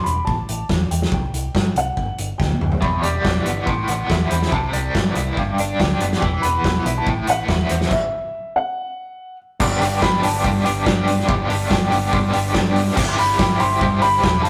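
Upbeat and carefree, this indie rock excerpt moves at 142 BPM in a straight 4/4, in G major. A dark upright piano carries the melody from the outset, its woody, boxy tone close and intimate, with audible action noise and long sustain. Beneath it, a round, punchy hollow-body electric bass and a loose, roomy drum kit with a fat snare, tight kick and dark cymbals drive things along, with a drum fill leading into a biting, double-tracked overdriven guitar riff with tremolo at 2.8 seconds. The band hits a stop at 7.9 seconds before returning for a new section. It all sits in a stone-walled room with moderate reverb and tube saturation, giving the rough feel of a rehearsal-room take.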